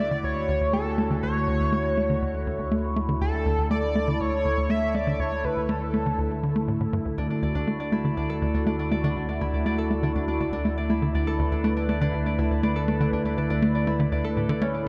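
A shimmering pulse-width lead opens this excerpt of ambient, sequencer-driven space music, its bright, nasal tone carrying the melody with chorus and tape echo until it falls away at 6.7 seconds. Beneath it, a tight, punchy sequencer bass drives a sawtooth riff with a filter-plucked edge and tape echo, while a filter sweep moves across the synth bass for the whole passage. A swirling, detuned analog pad sustains chords through phaser and chorus, starting on a Dmaj7, and a round sine sub bass holds a deep low D underneath. At 7.2 seconds a concert harp enters with ringing, fingerpicked arpeggios, its acoustic tone trailed by tape echo. The mood is expansive and luminous in a straight 4/4, bathed in a wet spring reverb and an echo-heavy mix.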